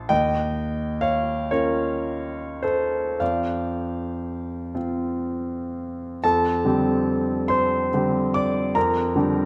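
A clear, intimate grand piano sits up front with audible action noise and long sustain in this dreamy, luminous fragment of impressionist classical solo piano. It moves in a rubato 6/8 at 34-49 BPM in F major, tuned to A4 = 435 Hz, and drifts from Eb9 to F5 before turning to F69 at 6.2 s and Gm7/F at 8.8 s, all bathed in a wet recital-hall reverb.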